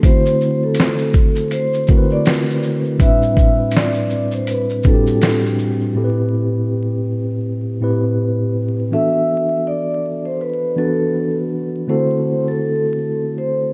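A steady 81 BPM groove in 4/4 with a swung sixteenth-note feel anchors this melancholic, reflective lo-fi hip hop piece in A dorian, cut from a longer work. A gritty, compressed sampler-style drum kit sits up front with a thumpy kick, medium-tuned snare, hi-hat and shaker, sounding re-recorded in a small room, while a grainy egg shaker stays in the background; both drop out near 5.8 and 5.9 seconds, opening a break from 6.0 to 8.9 seconds. A mellow tine electric piano carries the chords throughout, clean yet colored by cassette tape and a low-pass filter, as if heard through built-in speakers, moving from D13 and Am11 to Am9, E9sus4 and D9. Above it, a vibraphone played with soft mallets sings the melody between A4 and E5, its metallic ring and slow motor vibrato softened by filtering and an airy, diffuse ambient delay. Vinyl crackle and light digital reverb wrap the whole in a dusty haze.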